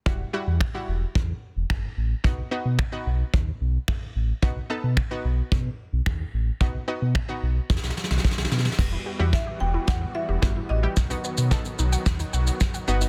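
A soft brush drum kit sits up front in this bittersweet, driving dance-pop excerpt in E harmonic minor at 110 BPM, with dark cymbals, a tight kick, a softly clipped snare, finger snaps and shaker. Beneath it, a deep sine sub bass with octave and a round, warbling analog pluck with chorus both pump with sidechain over Emadd9 and B chords. After a drum fill, a build-up starts at 8.8 s: a smooth soft supersaw holds chords and a lush, wave-folded unison pluck plays delayed arpeggios in the background, both pumping, while a woody marimba with hard mallets adds a brief delayed melody from 9.3 s, all in a small room under a dense, heavily limited master.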